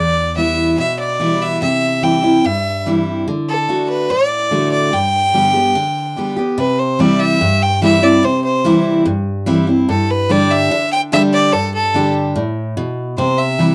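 A sunny, easygoing country excerpt opens with a bright, full-bodied picked jumbo acoustic guitar and a clear, earthy bowed fiddle sitting up front together from the start, the fiddle carrying the melody over the guitar's accompaniment as the chords move from Em through C, D and G before a second section settles on C and Gsus2 around 6.6 seconds, all captured in a dry, close 1970s-style studio sound with light reverb.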